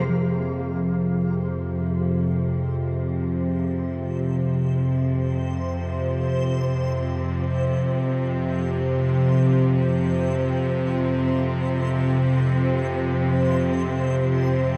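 Cavernous and dark, this dark ambient drone in F minor drifts in free time, resting on a single F minor chord, and is cut from a longer piece. An up-front, string-like drone with a tense, detuned sawtooth edge, a noise layer, ring modulation and vibrato holds the low register throughout, while a distant chamber cello section sustains smooth, clear chords as it fades in, and a reversed, granular texture swells dreamily above. For the first 7.0 seconds a pure, ringing quartz singing bowl, struck with a wooden striker and set in the background, plays meditative arpeggios through tape echo, all within an echo-heavy cassette mix bathed in a long plate reverb.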